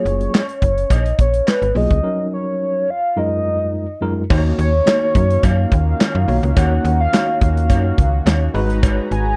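A velvety, smooth synth lead with chorus, slapback echo and vibrato carries the melody up front in this late-night, funky excerpt of early-eighties boogie funk at 106 BPM in a straight 4/4, centred on F#maj9, D#m7 and G#m7 chords. A snappy, metallic FM slap bass and a punchy modern drum kit with bright cymbals, handclaps and crash drive the groove, while a worn, slightly out-of-tune tine electric piano with light overdrive accompanies beneath and a distant cowbell sits in the background. After a break at 2.0 s, a brassy, detuned analog pad with chorus and tremolo enters at 4.3 s for the second section, all captured in a dry, close studio sound.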